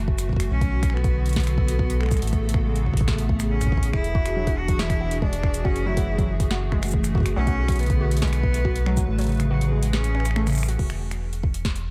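Driven by a deep electronic kick and a booming analog drum machine with crisp snare, metallic hats, snaps and shaker at 140 BPM, this melancholic, eerie IDM fragment sets a rubbery, nasal square bass beneath a hollow, flute-like pad, a biting bowed cello melody with vibrato in a diffuse delay, and a lo-fi, warbling pluck playing arpeggios from 4.1 s over chords moving from F#m7 through Amaj9 and E9. The kick drops out at 9.1 s and returns as the other parts thin out near 10.8 s, leaving the bass, kick and drum machine on a brief chordless tail in a dry, close sound.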